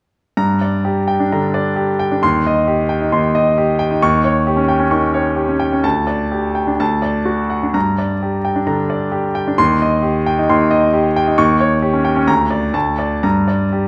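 A bright grand piano enters at 0.4 seconds and carries this fragment of a virtuoso classical piano study alone until 13.9 seconds. The mood is agitated and passionate, set in G minor and in 4/4, with a rubato feel that lets the tempo drift between 118 and 138 BPM. The piano ranges from D2 up to Db6. Its tone is brilliant and polished, with a long sustain, and it sits up front and intimate, close enough that the action noise of the instrument is audible. The harmony moves from Gm through Cm/Eb, Eb7 and a suspended D resolving to D, back to Gm, then passes again through Cm/Eb and Eb7 before closing on Bb/D, D5 and a final Gm. A wet recital-hall reverb with a 1.8-second decay surrounds the playing.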